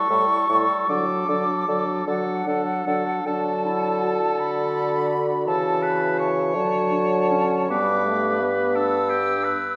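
Tender and serene, this fragment of a slow romantic movement for wind quintet drifts in 6/8 at around 49-58 BPM, counted in dotted quarters, with a flexible rubato in D major. The silver concert flute carries the melody high above the ensemble, its airy metallic tone tongued and shaded with vibrato while sounding somewhat distant. Beneath it the oboe sings a warm second line with light vibrato, and the clear French horn and the clarinet, the latter set further in the background, fill out the accompaniment. The bassoon enters at 0.1 s to anchor the bass with a warm, lightly vibrated tone. Harmonies move from A7 to D, and after a change of section at 3.3 s they pass through A/C# and D before reaching G at 7.7 s. A generous concert hall reverb gives the whole quintet a roomy, enveloping glow.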